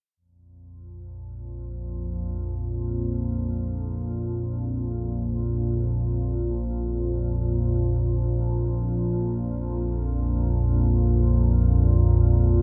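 Ambient music in free time, cut from a longer piece, with an unsettling, ominous mood. A single organ-like drone enters at 0.8 seconds and holds through to 12.6 seconds, sitting low between Bb1 and F2 on a Bb5 chord. Its unison tone blends sine and sawtooth colours, with a slow attack, long sustain and long release, thickened by ensemble chorus and its own built-in reverb. Though calm on its surface, the drone sits up front while a filter sweep runs across it for the whole span. The dark production stays below 10.4 kHz and is bathed in a huge ambient reverb with an 8.7-second decay.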